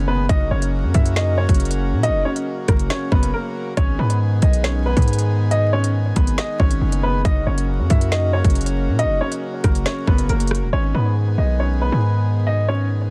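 An intimate upright piano melody, softened by a low-pass filter and trailed by digital delay, opens this cold, ominous half-time drill excerpt over reedy, breathing harmonium chords and a heavy, saturated 808-style bass, before an up-front drum kit with a hard-clipped kick, woody snare, crisp hats, rim clicks and 12-bit sampler grit enters at 0.3 s, passes through a brief break at 3.3 s and stops at 10.6 s, set in small-room ambience within a dense, heavily limited master dusted with vinyl crackle.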